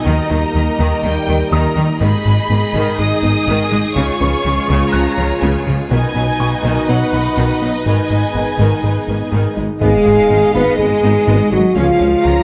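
Set in a moderate scoring-stage reverb, this futuristic, vast hybrid orchestral and electronic film cue at 123 BPM in G# dorian, cut from a longer piece, layers a clear, distant violin section carrying the melody over a second, lush violin line, background violas and cellos, a close, even double bass section, warm French horn chords, a hollow, flute-like chorused pad, a very quiet felt-muted upright piano, a soft, round pluck playing arpeggios and a rubbery, nasal square-wave bass riff, with a mellow tuba and a huge, dark impact joining at 9.8 s.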